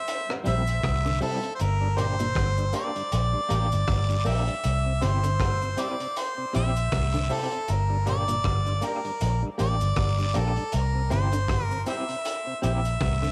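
A laid-back 4/4 groove at 79 BPM with a swung sixteenth-note feel carries this meditative roots reggae excerpt, built on a crunchy breakbeat drum kit of hi-hat, tight kick and rim click, its dark, gritty sound rolled off at the top and saturated by cassette tape. Cabasa and guiro sit close but in the background, while a round, foam-muted vintage fingered electric bass stays up front in a low register from G1 to C2. A clear, close-miked harmonica leads the melody from the very start, with light vibrato and scooped notes, its line thrown into dub echo and tape coloring. Behind it, a tonewheel organ with key click turns slowly through a rotary speaker, an electric guitar at the edge of break-up adds twangy accompaniment with tremolo and dub echo, and a clean, compressed semi-hollow guitar joins at 1.1 seconds with chorused arpeggios. The harmony sways between C and G minor in a small, lightly reverberant room, with the intimacy of a home cassette recording.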